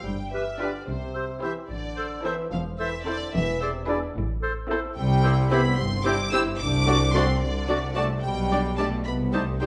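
Quirky and magical, this cinematic passage in 6/8, cut from a longer piece, sets a floating, sul tasto studio violin section on the melody over mellow, distant French horn chords, with a bowed symphonic double bass section and an intimate chamber cello section in the bass, while a clear, close-miked oboe, a dark clarinet, a pure flute section, a background chamber violin section and a softly attacked chamber viola section add second lines and accompaniment, all set in a wet stone-room reverb.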